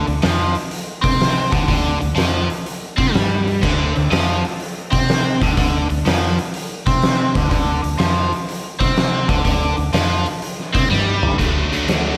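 A crunchy, double-tracked overdriven guitar leads this gritty, raunchy blues rock and southern rock power trio excerpt, picking a bright riff through phaser and slapback echo at 124 BPM in 4/4 with a swung eighth-note feel. Beneath it sit a vintage foam-muted fingered electric bass with a round, amped tone and an oversized low-tuned acoustic kit with a punchy kick, fat snare, dark cymbals, hi-hat, toms and a saturated edge. A drum fill runs from 10.9 seconds, and the harmony moves from Dm7 to D at 11.4 seconds. A lush hall reverb and a small room give the trio a big arena sound.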